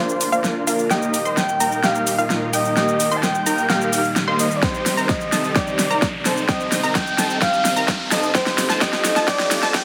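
A breathy, flute-like synth lead carries the melody with dub echo over an anthemic, euphoric festival progressive house build-up at 129 BPM, tuned to A4 = 435 Hz and moving through Bb, Eb, Cm and F. A huge supersaw riff with a cassette-tape tint, a chorused vintage-sounding pad and a bright unison pluck arpeggio pump against the sidechain as filter sweeps run across all three, while a thick, menacing detuned saw bass sits very quiet underneath. An overdriven big-room kit with a massive snare and metallic hats plays a fill up front throughout, a background riser joins at 1.2 seconds, and a punchy layered kick drops in at 4.6 seconds, all set in a moderate recital-hall reverb.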